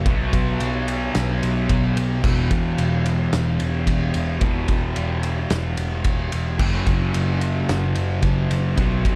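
A straight 4/4 rock pulse carries this hazy, blissful shoegaze and dream pop excerpt, where a dark, double-tracked fuzz guitar riff with lush chorus sits up front over B5, E5 and F#5 chords, a round, foam-muted vintage electric bass picks out the low end, and a loose indie drum kit with a punchy kick, medium-tuned snare and dark cymbals pumps in its studio room, all within a dreamy mix soaked in hall reverb.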